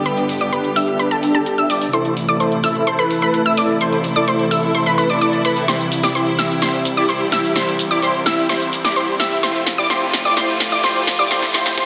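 Huge, detuned supersaw chords sit up front in this anthemic, euphoric festival progressive house build-up, their riff moving through G, Am, C and F under a filter sweep with tape echo, while a bright unison pluck spins high arpeggios coloured by cassette tape grit. Beneath them, a soft-bowed chamber string section holds intimate sustained chords, and a very quiet, thick detuned saw bass anchors the low end. A punchy, layered big-room drum kit of hi-hat, shaker and snare drives the groove, launching a fill at 5.7 s before a faint riser enters at 8.7 s, all bathed in a lush hall reverb and a dense, heavily limited master.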